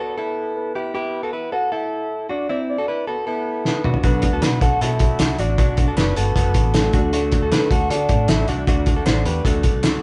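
A straight 4/4 pulse at 155 BPM carries this bright, nostalgic jangly indie pop excerpt in D major, where a round, octave-layered synth lead with chorus, phaser and vibrato sings the melody over compressed, direct-recorded clean guitar arpeggios. A close-miked trumpet adds a clear second line from 3.3 s, and a drum fill at 3.7 s brings in a muffled, gritty, cloth-damped kit with a fat snare. From 4.0 s, a foam-muted fingered bass, a woody, slightly detuned upright piano and a slightly broken-up guitar through a small old amp with phaser join, followed at 4.4 s by very quiet hollow handclaps, all set in a moderate large-studio reverb.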